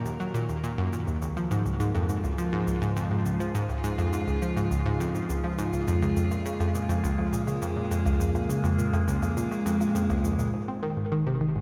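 This hypnotic, cosmic stretch of sequencer-driven space music opens with a bright, morphing wavetable pad holding sustained chords through a phaser. Beneath it, from the same moment, sits an up-front analog pluck riff with a detuned, wave-folded sawtooth bite, chorus and tape echo. Electronic cabasa and woodblock, re-recorded in a large room and echoing on tape, fade in until 10.5 s, when a round sine sub bass enters in the background. The mix is a dreamy, reverb-soaked hall as the harmony moves from Ebm through Db to Ab.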